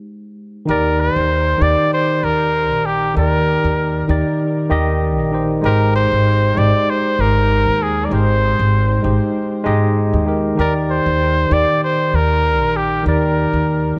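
Relaxed and blissful, this sunset chillout excerpt at 97 BPM in Eb major opens on a barky, slightly out-of-tune tine electric piano with tape echo on an Abmaj7 chord, then at 0.7 seconds a clear, punchy flugelhorn solo with vibrato, delay and vintage 12-bit sampler grit takes the melody up front while a woody, growly pizzicato upright bass joins underneath, all under light studio reverb as the harmony sways between Ebmaj7 and Abmaj7 with a gentle sixteenth-note swing.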